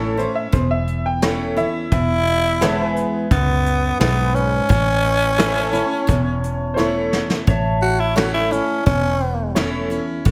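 A raspy, growling tenor saxophone carries the melody up front with plate reverb and takes a solo from 7.5 seconds in this heartfelt, nostalgic honky-tonk country excerpt, backed by a woody, slightly detuned upright piano on a second line, a jangly honky-tonk upright piano, a full-bodied picked steel-string acoustic guitar with finger squeak, twangy pedal steel chords in the background, a round, foam-muted electric bass, and a distant brush drum kit that enters at 0.2 seconds and plays a fill at 6.8 seconds.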